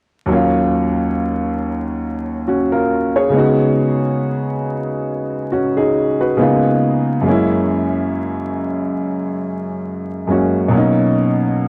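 An upright piano enters at 0.3 s, woody and clear with long sustain, sitting up front under a low-pass filter as it plays accompaniment chords from Ebm9 through Db9sus4, Db13 and Gb7 to a closing Bmaj7. This reflective, hazy hip hop fragment in Eb minor moves at a slow 69 BPM with a swung 16th-note feel. The whole recording is coated in worn, warbling cassette tape, vinyl crackle and pitch drift inside a wet studio ambience, and it is cut from a longer piece, ending at 11.7 s.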